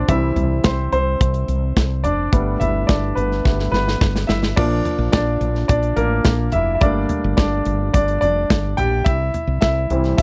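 A clear, polished baby grand piano leads this short excerpt of anthemic, piano-driven pop, sitting up front in the mix and carrying a solo line through both halves of the passage. Beneath it, a woody fretless electric bass adds a dark, round, hollow-bodied low end that stays punchy and direct. A modern acoustic drum kit joins at 0.1 seconds, with a punchy kick, medium-tuned snare, hi-hat, crash and toms, and it plays a fill from 3.4 seconds that leads into the second half at 4.6 seconds. The harmony moves from C to Gadd9, then shifts to Bb and Gmadd9 before returning to C, giving the passage a warm lift. The sound is dry and close, with little reverb, much like a 1970s studio recording.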